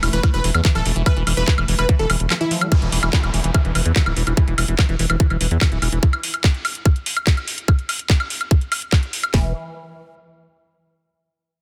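This psychedelic trance excerpt opens on a drop at 145 BPM in a straight 4/4, with an E5 chord carried by a very quiet, bright, evolving wavetable pad that morphs through sustained tones with ensemble chorus. Beneath it, a deep, round analog bass with tube saturation sits up front, while a squelchy, resonant liquid acid bass riff runs through phaser, delay and sidechain pumping. Two layered electronic garage drum kits drive the groove: one with a tight kick, cracking snare and hi-hat, the other with handclaps, hi-hat and woodblock, both re-recorded in a small room and placed up front. A punchy, detuned supersaw stab adds a brief melody with dub echo and the same pumping effect until 2.5 seconds. After the pad ends at 2.8 seconds, a background downlifter sweeps through as both basses continue to 6.0 seconds, leaving the drums to carry on before the basses return briefly at 9.3 seconds. The mood is hypnotic and intense, with light reverb and a dense, heavily limited modern master.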